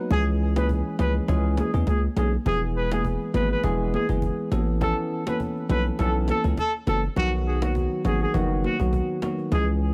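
A heavy, punchy 808-style bass sits up front in this sultry, smooth afrobeats excerpt at 102 BPM. Its sine tone carries a noise layer, with a fast attack and a decaying tail, beneath chords moving from C#m through E and Aadd9 to B. A bell-like tine electric piano, clean and direct with analog chorus, plays accompaniment, while a distant, roomy trumpet with vibrato and delay carries the solo melody. In the background, a woody cajon with faint snares and soft hands sits beside ringing, high-tuned vintage congas played with hard hands, in a small room ambience that opens on a break running to 2.5 seconds.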